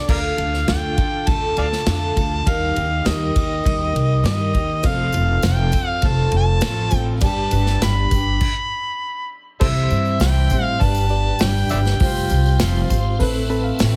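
Heavily compressed with a radio-like sheen and a small-room ambience, this hopeful folk rock and heartland rock excerpt moves at 101 BPM in a straight 4/4, led by a gritty, overdriven harmonica with vibrato, scooped notes and tongue slaps, trailed by analog delay. A shimmering, octave-doubled twelve-string acoustic guitar, a woody pizzicato upright bass up front, an airy unplugged drum kit played with bundle sticks and a very quiet, piping tonewheel organ on slow rotary fill out the band, with a reedy electric piano in fast tremolo and a jingly tambourine joining at 4.8 seconds. After a stop at 8.4 seconds, the chords shift from C toward a closing Amadd9, and the electric piano adds a fill at 13.2 seconds.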